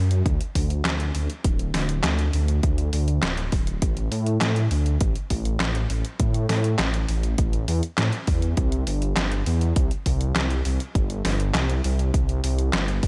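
Synthwave at 101 BPM in a straight 4/4, this short excerpt from a longer piece carries a romantic, dreamy mood. A dark, detuned sawtooth bass opens at 0.0 seconds and holds the low end from D1 to A2, its deep, rumbling tone beating against itself with a fast attack, sustained notes and sidechain pumping. An 8-bit digital drum machine, sampler-style and detuned, joins at 0.1 seconds with handclaps, hi-hat and a medium-tuned snare that sounds re-recorded in a small room. An electronic kick drum follows at 0.3 seconds, layered and punchy, sitting up front alongside the bass and drum machine. The sound is dry and close, with little reverb, and the whole passage stays in a single section through 13.1 seconds.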